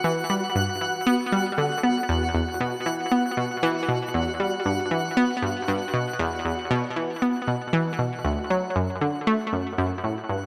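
Bathed in a wet plate reverb with a long 2.4-second tail, this short cut from a longer piece of ambient, sequencer-driven space music moves at 117 BPM in E minor, feeling expansive and hypnotic as the harmony rests on Em before shifting to D at 8.2 seconds. Up front, a round, detuned analog pluck carries the riff in a low register, its fast attack and short decay colored by ring modulation, a filter sweep, chorus, delay and shimmer reverb. Above it, a twinkling granular texture with FM sparkle and an octave-up shimmer blooms slowly and sustains through 10.3 seconds.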